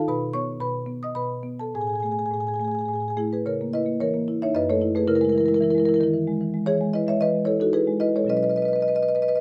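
A solo marimba played with soft mallets carries this flowing, hypnotic contemporary classical excerpt in C# minor, its woody, round and mellow tone sitting up front in a boxy small room with light reverb and close, detailed miking as it moves in rubato 3/4 at about 101-114 BPM across a range from F#2 to D#6, drifting from Badd9 and A5 into a second passage at 3.5 s that circles C#m6, F#m9 and Emaj7 before settling back on Badd9 at 8.3 s.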